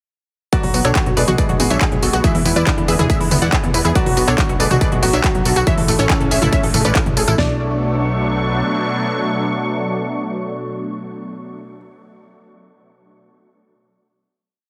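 Emotional and driving, this short uplifting trance piece opens straight into a drop at 0.5 seconds. A mellow unison pluck carries the lead, a repeating riff in thirds and sixths over a pedal note in sixteenths, colored by cassette tape, delay and sidechain pumping, while a very quiet second unison pluck doubles it. Alongside them, a clear concert grand piano with tape echo plays its own repeating riff in octaves in the background, and an evolving, soft-attack supersaw swell holds sustained chords with a pumping pulse. A bright pluck spins an eight-step arpeggiated sequence with tape echo, and a funky analog bass rolls in sixteenths under a big-room drum kit of punchy four-on-the-floor kick, huge snare, toms, crisp hats, handclaps and tambourine in studio reverb. At 7.4 seconds the drums drop away and the piece settles onto a final chord, with the leads, piano and pad ringing on until about 11.8 seconds, all within a heavily compressed, radio-like sound.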